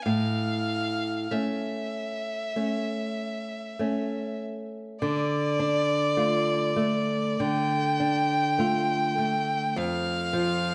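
A moderate recital-hall reverb surrounds this short, solemn fragment of a romantic duo, with both players up front. A clear, focused bowed violin carries the melancholic melody with vibrato over a flexible rubato pulse, while a small, fingerpicked nylon-string guitar accompanies with acoustic warmth and audible finger squeak. A new section begins at 5.0 s, and the chords fall away at 9.8 s before the cut ends at 10.7 s.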